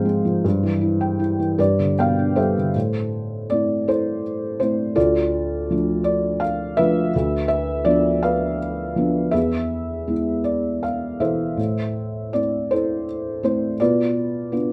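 A felt-muted upright piano plays alone in this wistful, reflective classical fragment, a lyrical solo in A minor at a slow, rubato 54 BPM in 6/8, its dark, intimate tone heavy with thick felt and close enough to catch the action noise, with a short fill at 1.6 s leading into a longer passage from 2.7 s that moves from Am through Dm and E back to Am, set in a moderate studio reverb and tuned slightly low to A4 = 437 Hz.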